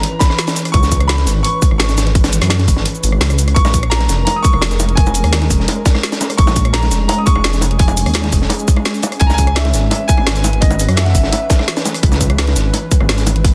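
Liquid drum and bass with a rolling, soulful mood, cut from a longer piece and moving through Dbm7 and Bbm7 chords. A clear, open grand piano carries the melody in its upper register, its long sustain trailing into delay, while a glassy, ethereal FM pad holds mellow chords in the background through ensemble chorus and its own reverb. The drums stack a tight, up-front electronic kick, a produced kit with a woody snare, bright hats, rim click and cabasa, and a crunchy breakbeat kit whose gritty, saturated snare and hats sit dark and rolled-off through high-pass filtering. A deep, rumbling detuned saw bass enters at 0.7 seconds with a beating, tube-saturated tone, and the kick briefly drops out before round, low-tuned bongos join at 3.6 seconds. The dense, heavily limited master keeps the drums and bass pressing forward beneath the clear, glassy keys.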